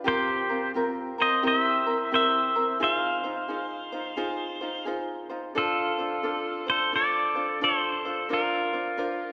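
Dreamy and relaxed, this short fragment of Hawaiian music sways at 87 BPM in a swung 4/4. A bright, clean electric pedal steel guitar carries the melody up front, compressed, played with fingerpicks and slide, and shaped with volume swells. It rides over a light, warm, fingerpicked acoustic ukulele that also sits forward, and the harmony turns from F minor to F major at 5.6 seconds, the pair ringing out in a concert hall's long, wet reverb.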